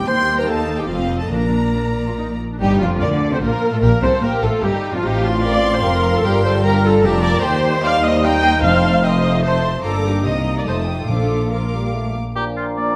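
A lively, cheerful classical-period orchestral movement in Bb major opens at once with bowed strings in a quick 3/4 at 148 BPM, taken with a rubato feel. Two violin sections share the melody and a second line, the melodic group smooth and set back, while an up-front viola section fills in accompaniment and lush cellos join bowed double basses on the bass, all with rich vibrato. A dark, distant clarinet adds a second line in the opening 2.4 seconds, and very quiet timpani with hard mallets strike briefly before returning from 8.6 seconds. From 2.6 seconds a roomy French horn section holds sustained chords beneath the strings as the harmony moves through F/A, Cm/Eb and F7 toward a cadence on Bb. In the final moments, from 12.4 seconds, a clear oboe, a mellow, pure flute section and a vintage-toned bassoon enter briefly with the clarinet and horns. The whole sits in the generous reverb of a scoring stage, and the passage is cut from a longer piece.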